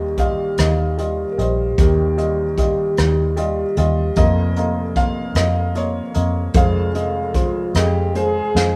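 Set in a slow, straight 6/8, this short excerpt of a melancholic, reflective acoustic folk-pop ballad rests on a dark, round, foam-muted fingered electric bass, joined at 0.2 seconds by a vintage brush kit of hi-hat, punchy kick, rim click and medium-tuned snare with a rolled-off top. Up front, a soft, intimate felt-muted upright piano carries the melody over a shift from Ebadd9 to Bbsus4/F, the band sounding as if playing live together in one room with light reverb. At 7.3 seconds a distant, roomy French horn enters with a warm, vibrato-touched classical second line, just before a drum fill at 8.6 seconds.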